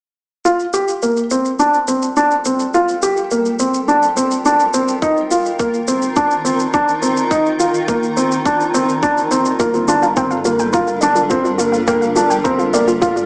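Cinematic and moving, this piano and strings electronica excerpt sits at 105 BPM in 4/4 with a straight feel, in G minor, cut from a longer piece. A dark, worn upright piano sits up front, playing a mellow riff with audible action noise, a woody, slightly detuned tone and a digital delay. Behind it, a cloudy granular pad slowly fades in, holding evolving, blurred chords with a moving notch, built-in reverb and sidechain pumping, while a produced electronic shaker ticks from the start. A tight electronic kick drum joins at 5.0 seconds as the harmony moves from Gm7 to Ebsus2. At 9.6 seconds, back on Gm7, a warbling, lo-fi pluck adds chorused, delayed arpeggios with ring modulation and a filter sweep, and a deep, rumbling detuned saw bass hums on G1 in the background, thickened by tube saturation and pumping. The whole mix carries a moderate echo-chamber reverb and a small-speaker character.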